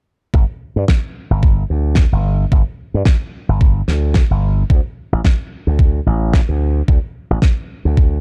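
A growly, punchy slap bass run through an envelope filter opens at 0.3 s alongside a thumpy, sampler-style electronic kick with a tape-softened, large-room tone, both sitting up front in a sensual, sleek nu-disco groove with a lightly swung sixteenth feel. A fat, dry acoustic snare with a rolled-off top joins at 0.9 s, set lower in the mix. The production is dark and warm, with little reverb, in this short cut from a longer track.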